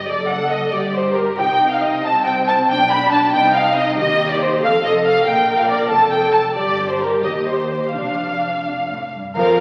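In a lilting 6/8 pulse of 82 to 96 dotted-quarter beats per minute, pushed and pulled with rubato, this brief passage from a quick classical-period movement for string orchestra sounds cheerful and graceful. Two violin sections carry the music throughout its 9.6 seconds, one singing the melody and the other tracing a second line in the same register, both bowed with soft attacks, expressive vibrato and a smooth, lush top, the second sitting a little more up front. Close beneath them, the violas supply accompaniment with a warm glow and touches of portamento. The cellos add a dark, woody bass from the background, while the double basses reach lower with a warm, woody tone. Harmonies drift from F#m6 and Gmadd11 toward C minor, then brighten through Eb6, F and Bb6 before closing on Dm/F. The strings bloom in a wet concert hall reverb, yet the whole is heard through the crackle and age of a very old 78 rpm record.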